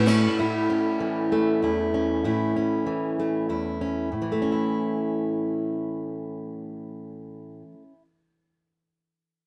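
A rough rehearsal-room recording with light reverb and warm saturation frames this uplifting, nostalgic folk fragment in A major at 64 BPM in a straight 6/8, where a bright, up-front, fingerpicked and plugged-in steel-string acoustic guitar plays accompaniment from 0.4 s to 8.0 s, shifting into a new section at 4.1 s.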